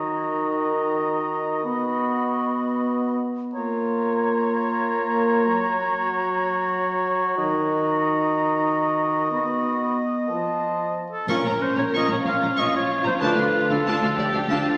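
Mellow French horns hold up-front sustained chords through this determined, swashbuckling excerpt of a heroic adventure film score in 12/8, as a close-miked oboe, an airy silver flute and a distant, roomy clarinet carry second lines across the opening build-up until, at 11.3 seconds, lush bowed strings enter, with a focused violin section taking the vibrato-rich melody, a darker violin section gliding with portamento below it, and background violas, expressive cellos and clear double basses, while a ringing, fingerpicked harp adds very quiet arpeggios and a soft-mallet timpani stroke and a dark triangle touch sound briefly at the entry, the recording set in the wet reverb of a scoring stage heard from further back in the room through a small speaker.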